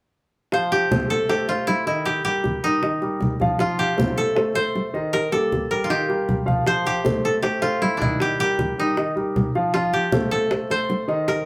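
Afro-Cuban jazz at 156 BPM in 4/4 with a straight feel, this lively, danceable cut from a longer piece sits in F major and rocks between F and Eb chords throughout. A koto carries the melody between D4 and C5, its fingerpicked tone woody and dry and placed up front. A grand piano accompanies across a span from Eb3 to F5, intimate and natural with long sustain and audible action noise, also close at hand. Low-tuned congas with a thick skin, played with soft hands, sound distant in a large room, while round, low-tuned bongos sit close yet in the background. All four parts play together from 0.5 seconds to around 11.5 seconds, captured as a band performing live in one room with moderate studio ambience.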